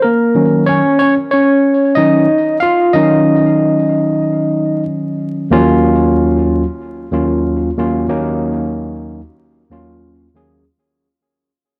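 Swung sixteenths at 60% drive a 93 BPM hip hop groove in 4/4, set in Eb minor with a nocturnal, smoky mood. A solo tine electric piano carries the whole cut from 0.0 to 10.6 seconds, ranging from Eb2 up to F5. Its tone is bright and barky, clean and direct, sitting up front with cassette tape colouring and a tape echo trailing its notes. The harmony rests on Ebm7 before shifting to Ebm9 at 5.5 seconds, where the music begins to fade out. A moderate small-room reverb, the character of a home cassette recording and a layer of vinyl crackle give this fragment of a longer piece a nocturnal, smoky atmosphere.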